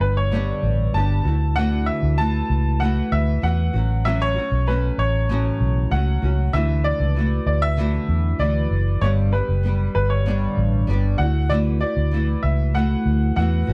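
Acoustic pop in D major at 97 BPM, easy-going and carefree, this excerpt cut from a longer piece has a bright, slightly detuned upright piano carrying the melody between B4 and A5 with plate reverb, over a double-tracked, fingerpicked nylon-string guitar that sounds small and up front. A vintage foam-muted fingered electric bass, round, punchy and amped, anchors the low end as the chords move through G, Dadd9 and A6. The production is dark with light reverb, all three parts playing throughout the 13.7 seconds.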